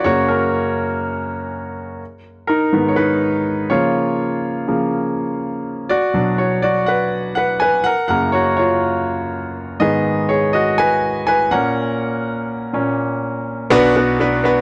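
Uplifting and warm, this brief pop piece, cut from a longer work, is carried by a solo concert grand piano in a straight 4/4 feel. The piano sounds bright and polished, with a deep bass that reaches down to B1 and upper notes that extend to G#5. The opening passage moves through F#, G#m and C#6. A second passage begins at 5.9 seconds, turns to Bm, then travels through F#, G#m and F#/A# before arriving back on Bm at 13.7 seconds. Captured dry and close in a 1970s studio style with little reverb, the instrument sits up front and present, giving the recording an intimate, hopeful character.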